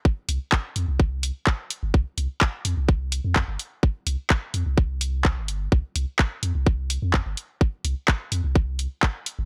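Minimal techno at 127 BPM with a hypnotic, clinical mood, built from a tight, layered electronic kick drum entering at 0.1 seconds, a deep sine sub bass with a pitch-drop attack and sidechain pumping, and an analog drum machine of handclaps and hi-hat with a tape-warm character, all held up front in a dry, gritty hardware recording cut from a longer piece.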